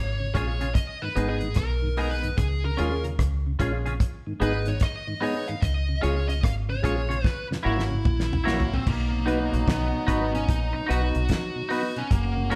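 Uplifting and laid-back, this swung roots reggae excerpt opens with a dark, distorted lead guitar solo over a round, punchy dub bass and a dry, fat-snared drum kit, while a semi-hollow electric guitar, a worn, slightly detuned upright piano playing stabs and a mellow tonewheel organ with slow rotary speaker and slapback echo sit behind it in a stone-room sound; a drum fill at 7.2 seconds leads into a tight, bright trombone section entering at 8.9 seconds.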